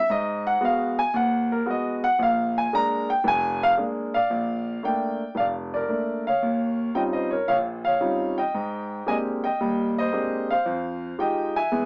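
Solo jazz with a relaxed, warm mood, swinging in 4/4 at 113 BPM as a lone concert grand piano sits up front in a moderate club ambience, its natural tone heard through a small-speaker sound. The piano is clear, with deep bass, as it opens on Abm7 and Bb7 before settling into Bb major at 4.3 s. From there it moves through Bbmaj7, Eb13, Abmaj9#11 and Fm9 until the cut at 11.9 s.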